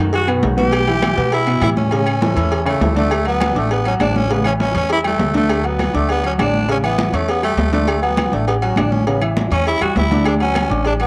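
Festive and sunny, this salsa cut from a longer piece moves at 201 BPM in D major, with a raspy, growling tenor saxophone playing an up-front, close-miked solo over a worn concert grand piano with deep bass and short sustain, a thumpy, dark pizzicato upright bass, bright high-tuned congas heard at a distance, ringing agogo bells and timbales, a round low-tuned cowbell in the background and very quiet claves, captured as a home cassette recording with moderate spring reverb as the chords settle from A7 onto Dmaj7 at 10.3 seconds.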